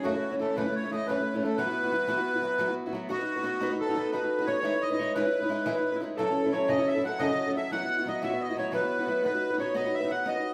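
A reedy, sweet accordion with light tremolo tuning carries the melody up front in this lively, bright Celtic folk excerpt in a straight 9/8, over a picked old ladder-braced acoustic guitar with a warm tone, while a fingerpicked concert harp joins at 3.1 seconds with a ringing second line, all set in a moderate large-studio reverb that captures the band playing live together in one room.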